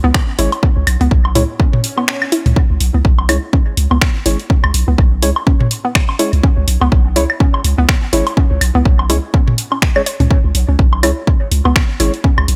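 Quirky and hypnotic, this short cut from a longer minimal techno track runs at 124 BPM in C# minor with a 57% swing on the sixteenths, built on an overdriven, up-front electronic kick, a punchy sine sub bass with a pitch-drop attack and sidechain pumping, and an overdriven house kit of finger snaps and bright hi-hats, joined from 0.5 s by tape-warm analog woodblock and toms soaked in dub echo. A hollow, bouncy square-wave pluck carries the riff with detuned, wave-folded bite, chorus, pumping and dub echo, while a dark, nasal organ stab with a moving notch and its own chorus and echo punctuates from 0.4 s. Around 2 s a brief electronic swell sounds as the kick drops out until 2.6 s, all set in a digital ambience.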